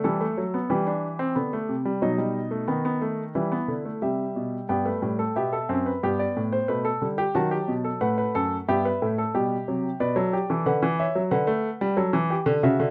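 Driving and solemn, this brief excerpt cut from a longer baroque-style four-part fugue features a warm, up-front baby grand piano playing alone at 91 BPM in straight 4/4, moving through E minor harmonies such as Em, B7, Gadd9 and Bm across a range from F#2 to A5, captured with close, detailed microphones and little reverb.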